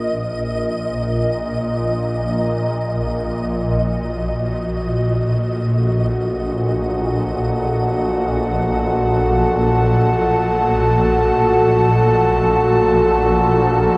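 Desolate and dark, this dark ambient drone drifts in free time, a 14-second excerpt cut from a longer piece, moving from a Bb5 chord to Gbm at 3.8 seconds. A swarming, warbling drone low in the register and a deep, moody analog pad with chorus both fade in up front, while a faint flickering, grainy texture high above fades out. The whole is bathed in a huge, wet ambient reverb with a 7.7-second decay.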